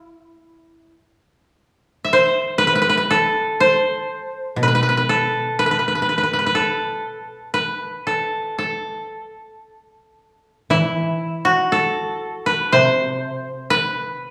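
Set in free, rubato time around 60 BPM in 4/4, this still, solitary Japanese traditional excerpt in A kumoi features an up-front, woody koto melody played with fingerpicks between E4 and E5 over a mellow, lower koto accompaniment spanning B2 to F#3, both sounding throughout the 14.3 seconds and carried by a reverberant recital-hall ambience, with a new section beginning at 10.7 seconds.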